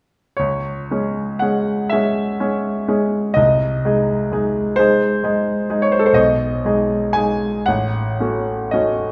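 Wistful and yearning, this brief passage cut from a longer romantic nocturne for solo piano unfolds in C# minor at a slow, rubato 37-44 BPM in 6/8. A clear, smooth grand piano with a vintage character and short sustain sits up front from 0.4 to 9.1 seconds, moving from C#m through G#/B# and G#m/B to F#m/A, all set in a reverberant recital hall.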